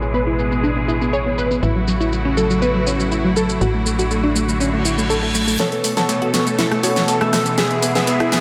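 A straight 4/4 pulse drives this expansive, uplifting progressive house passage, where a layered electronic pop drum kit with a fat snare, a tight, nasal sequencer bass, lush sustained chords from a distant, vibrato-rich symphonic string section and glassy, crystalline wavetable arpeggios with chorus and delay support a punchy, detuned unison pluck melody, before a very quiet reverse cymbal and riser from 4.8 s lead into a build-up at 5.6 s, where the bass stops and retro, glossy polysynth stabs and a gritty, overdriven breakbeat sampler-style kit join a drum fill.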